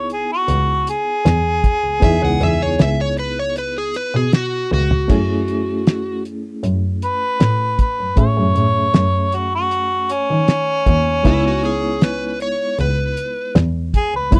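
Smoky and soulful, this straight-eighth soul blues excerpt sets a mellow, lightly vibrato harmonica melody up front over a barky, reedy electric piano with fast tremolo and light overdrive, a clear, nasal bowed double bass, and a thuddy, cloth-damped drum kit with a fat snare and dark cymbals, while an overdriven slide guitar adds a second line from 2.0 to 6.2 seconds and again from 11.3 seconds, all captured in a dry, close 1970s-style studio sound.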